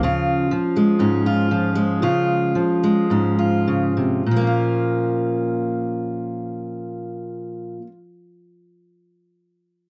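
A fingerpicked steel-string acoustic guitar opens the recording, sitting up front with a warm, concert-ready tone. This is a bittersweet, yearning folk piece in Bb minor and straight 4/4, its tempo ranging from 99 to 123 BPM, and it slows during the first 4.3 seconds. The guitar plays accompaniment across a range from Ab2 to F4, resting on a Db chord at the start before moving to Bb minor at 4.3 seconds, where a second passage begins. The playing continues until 8.0 seconds, and the passage runs on to 9.1 seconds. A moderate booth ambience with a short 0.2-second decay surrounds the instrument, and the clip is cut from a longer piece.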